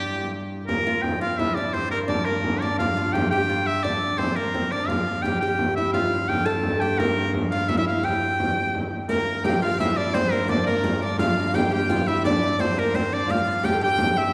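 Medieval dance in 6/8, driving and mysterious, cut from a longer piece, with an edgy, folk-style shawm leading up front, its vibrato and smooth top trailed by tape echo. A woody, fretless oud plucked with a plectrum carries a second line over a rich, reedy viola da gamba drone with airy bow and ringing gut-string tone, while a deep, distant frame drum keeps the pulse. A clear, lightly vibrato fiddle, heard only for a moment at the start, returns in the background at 9.1 seconds as a very quiet riq adds dark, saturated jingles, the ensemble heard from further back in a wet scoring-stage reverb.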